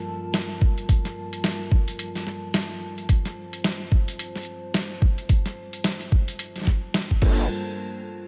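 A gritty, pitched-down sampler-style boom bap kit of crash, hi-hat and medium-tuned snare enters at 0.3 seconds, joined from 0.6 seconds by an overdriven, knocking electronic kick up front, all in a small room, in this playful, swaggering glitch hop excerpt with a swung feel. Beneath them a deep, moody analog pad with detuned, nasal character, chorus, 12-bit sampler grit and sidechain pumping holds a Gm9 chord from the start. Only at 7.2 seconds does a growling, saturated bass with a formant filter appear on G1, alongside a brief bell-like tine electric piano stab with tape echo set back in the background, all under light reverb.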